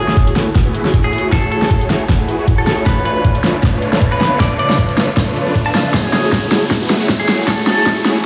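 A swung, half-time groove drives this emotional future bass build-up, with a knocking, tape-warm electronic kick beneath an overdriven pop kit of fat snare and warm hats sitting up front through a drum fill that spans the whole passage. Huge, detuned supersaw chords with phaser carry the riff under a filter sweep, while a clean, compressed semi-hollow electric guitar sings the melody through tape echo, and an ethereal, granular pad shimmers an octave up in the background, also filter-swept. The supersaws, guitar and pad all pump to the sidechain as a riser hovers behind them, and a lush hall reverb plus the ring of a bare stone room, heard through a big sound system, surround the mix.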